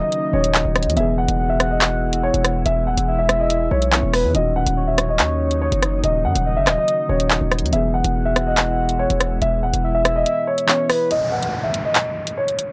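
A dark, mellow concert grand piano opens this cold, ominous drill excerpt, carrying the melody through a low-pass filter. Alongside it from the start are a round octave-layered synth lead with chorus, vibrato and tape echo, soft electric-piano-like synth keys, a glassy FM pad with ensemble chorus and ethereal reverb sitting in the background, and an electronic downlifter. The half-time groove at 142 BPM arrives almost at once: an up-front drum kit with tape-warm hats, handclaps and rim clicks, and a heavy, aggressive distorted 808-style bass with a noise layer. The harmony moves between Ebm7 and E chords in a dry, gritty mix. The kick drops out from 10.3 seconds, and at 11.1 seconds the bass, keys, pad and lead have stopped, leaving a short break of piano, drums and a second downlifter.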